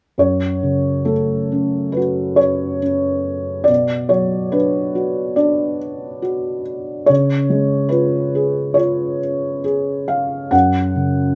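The rhythm moves in a flexible rubato over a 4/4 metre at about 70 BPM, giving this brief classical excerpt a lyrical, unhurried sway. It is a melancholic, dark solo for felt-muted upright piano, set in F# harmonic minor and tuned slightly high with A4 at 441 Hz. The piano plays alone from 0.2 to 11.3 seconds, spanning F#2 to F#5, and its thick felt gives a soft, boxy, intimate tone, with the mechanical noise of its action clearly audible. The harmony passes from F#m to Bm, then to C#, and settles on a bare F#5 at 10.5 seconds. The instrument sits up front in a light reverb, and the passage is cut from a longer piece.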